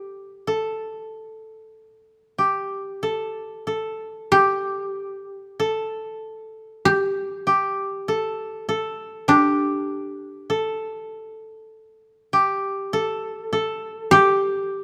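Solitary and meditative, this short fragment of Japanese chamber music unfolds at a slow, rubato pace of around 46-50 BPM in 4/4. Two kotos play throughout its 14.8 seconds, both plucked with fingerpicks and sounding mellow, woody and dry, placed up front in the mix. One koto carries the melody between D4 and A4, while the second traces a narrower line from G4 to A4, sitting slightly beneath the lead in level. The music shifts into a new section at 4.3 seconds, continuing the same contemplative character as it goes on. Close, detailed microphones capture the intimate attack of each plucked note, wrapped in a light reverb, and the piece is heard as a cut from a longer work.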